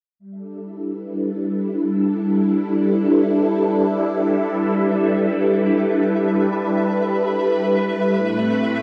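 Ambient fragment in free time and G major, expansive and luminous, where a swirling, vintage phased string machine sits up front with bright sawtooth chords from A2 to B4, its slow attack, ensemble chorus, phaser, shimmer reverb and a filter sweep carrying a G6 harmony that moves to Am7 at 8.1 seconds. In the background, a pulsing gated texture fades in on a single E5, its detuned triangle unison softened by chorus, long release and shimmer reverb. A wet plate reverb soaks the dreamy mix, and the top end is rolled off above 10.5 kHz.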